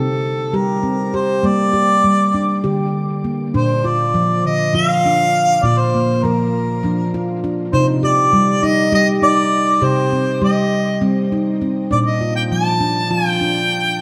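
Bathed in a wet echo-chamber reverb, this hypnotic world-meditative excerpt in 7/8 at 200 BPM (eighths) pairs a ringing, nitrided-steel handpan, played with soft fingertips and spreading arpeggios through shimmer and diffuse ambient delay, with a distant, jazz-tinged harmonica melody whose light vibrato and scooped notes float over chords moving from C5 and Gm into Bb and Cm after the shift at 3.5 seconds.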